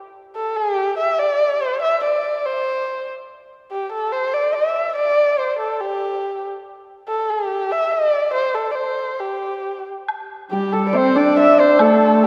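Festive and graceful, this Chinese traditional chamber piece, cut from a longer work, opens with a lone dark, woody erhu carrying the melody up front with vibrato and portamento in a wet concert hall, until a very quiet, dry woodblock enters at 10.1 s and, at 10.5 s, a shimmering, ringing hammered dulcimer and a rich, husky horsehead fiddle join on second lines.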